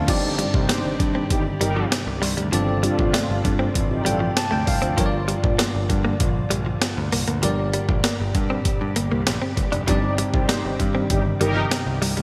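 Moody and dramatic, this 1980s-style pop passage at 98 BPM pairs a bell-like tine electric piano with subtle chorus, a glassy FM pad in the background and a compressed, clean electric guitar riff with digital delay, all over a punchy picked bass and an up-front, gritty breakbeat sampler-style kit of thumpy kick, snare, hi-hat, tambourine and crash, while dark, detuned synth brass stabs open the passage and return at 10.0 seconds, the piano slips in a fill at 3.8 seconds, and a lush hall reverb and bright digital production frame the sound.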